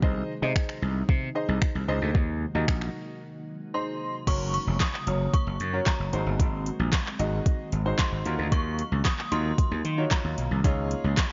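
A dry, dark-toned mix with little reverb and a muffled top end frames this short, euphoric, upbeat dance-pop excerpt in a straight four. Up front, a gritty, growly, punchy slap bass with overdrive and sidechain pumping drives the low end alongside an overdriven R&B-style electronic drum kit built from a soft kick, fat snare, metallic hi-hats, finger snaps, handclaps and a crash cymbal. Behind them, an intimate concert grand piano plays accompaniment with audible action noise and its own sidechain pumping, while a very quiet, glassy FM pad holds ethereal, slow-blooming chords. After a brief break around 3.2 seconds, a vintage FM synth chime enters at 3.7 seconds with a ringing, warbling, inharmonic melody in a high register, coloured by ensemble chorus and tape echo. The harmony moves through Ab, Gb, Ab7 and Ebmadd9 before settling on Dbadd9 near 10.6 seconds.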